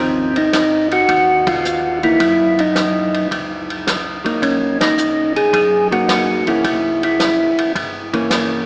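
A round percussive tonewheel organ, with third-harmonic percussion and a slow rotary speaker, carries the up-front melody in this bluesy, swinging soul jazz organ trio excerpt at 108 BPM, over a dark, compressed hollow-body jazz guitar accompaniment, a mellow second organ on bass with chorus vibrato and key click, and a fat-snared, tight-kicked soul drum kit with a rolled-off top, the whole mix steeped in cathedral reverb with a small-speaker sound and band accents at 1.4 and 4.7 seconds.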